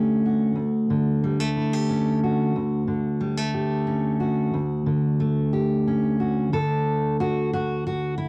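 Gentle and warm, this short folk passage in a straight three-four time features a single fingerpicked steel-string dreadnought acoustic guitar, full-bodied and placed up front. It rests on a Dmaj7 chord before settling onto a plain D at 6.5 seconds, where a new section begins. The home cassette recording carries a modest booth ambience, and the piece is cut from a longer performance.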